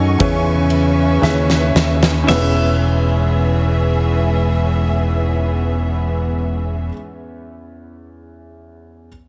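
A round, dark fingered electric bass sits up front in this hopeful, heartfelt pop ballad fragment in E major, moving slowly at 56 BPM in a straight 4/4 and easing its pace in the opening bars over an E6 chord. A huge arena drum kit with a punchy kick, fat snare and bright cymbals plays only from 0.2 to 2.5 seconds, including a drum fill that carries the music into the second section. A natural concert grand piano with deep bass and audible action noise plays the accompaniment and continues alone until 9.1 seconds, after the other parts stop. Further back, a clean, twangy twelve-string electric guitar carries the melody through a digital delay, joined by a reedy chamber cello section with a gut-string, period-style tone, which plays a second line through the same delay. A lush, distant studio string section holds sustained chords with vibrato, and the whole mix is heavily compressed like a radio broadcast, with a touch of small-room reverb.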